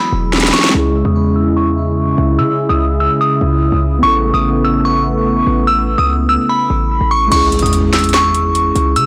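Trap-flavored hip hop at 146 BPM in a half-time feel and C# minor, this menacing, hard-hitting fragment is cut from a longer piece. A glassy, crystalline FM synth bell carries the high melody up front, its warbling vintage tone colored by chorus, phaser, filtering and delay, while a mellow, clean tine electric piano accompanies beneath and a smooth, detuned sawtooth analog pad holds sustained chords. A punchy, heavy 808-style bass with a sine body and noise layer enters at 0.1 seconds, its saturation adding grit, and the chords move from Eadd9 to C#m and Aadd9 under a long filter sweep. The electronic trap kit, with a sharp snare, metallic hats, handclaps and crash, plays a brief fill at 0.3 seconds, then drops out until 7.3 seconds, when it returns with a background electronic impact as the pad falls away and the harmony lands back on C#m. The whole recording is blown-out and overdriven, with only a light reverb around it.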